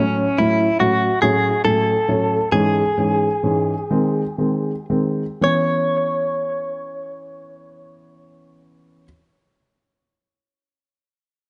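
A slow, straight 6/8 pulse eases back over the first 5.4 seconds of this melancholic, aching pop excerpt, as the harmony moves from F#m/A through C#m/G# and G# to settle on C#m7. A clean, direct-recorded electric guitar carries the melody with a picked, compressed, scooped tone colored by harmonic tremolo and analog delay, while a baby grand piano accompanies in a lower register with an intimate, natural, short-sustained sound and audible action noise; both parts sit up front. A moderate plate reverb surrounds them in a dark, warm production with the top end rolled off above 11.0 kHz.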